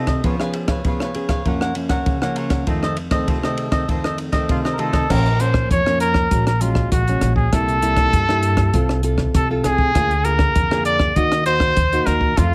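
Samba and choro in a yearning yet lively mood, this short excerpt opens with a crisp, picked cavaquinho and a full-bodied, fingerpicked nylon-string guitar, whose fresh strings and finger squeaks come through the close, detailed microphones. A compact cocktail drum kit plays from the start with a small-room, dark, smooth sound, a punchy kick and a rolled-off top, set up front with hi-hat, ride, crash and rim clicks. At 4.5 seconds a clear trumpet takes the solo melody, vintage and jazz-styled with vibrato and a slapback echo, also placed up front. The cavaquinho stops at 5.1 seconds as a woody, thumpy upright bass on gut strings enters, played pizzicato in a low register. Light reverb adds a touch of space to the mix.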